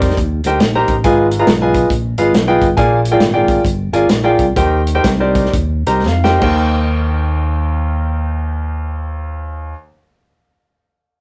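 Uptempo gospel with a swung 4/4 feel, this short excerpt sounds hopeful and jubilant, played in a rough rehearsal room with moderate studio reverb. A clear concert grand piano sits up front carrying the accompaniment, its deep bass and long sustain ringing across a broad range from the low register to high chords. A fingered electric bass anchors the low end with an amped, growly tone, playing throughout. The soul drum kit has a tight kick, medium-tuned snare, hi-hat and crash with dark cymbals and a rolled-off top, sounding roomy yet close. The band slows down from 2.8 s, the piano and drums each adding a fill leading into a new section at 6.6 s, just as the drums drop out, and piano and bass carry on to the end.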